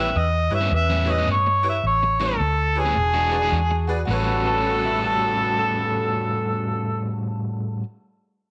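A mellow, overdriven harmonica carries the melody up front with light vibrato and scooped notes over a laid-back, gritty electric blues shuffle, joined by a crunchy guitar riff with tremolo, a round, punchy foam-muted bass, a jangly metallic tack piano, smooth saxophone stabs in the background and, from 4.5 seconds, a dark, lo-fi second guitar line, all set in moderate spring reverb and small room ambience.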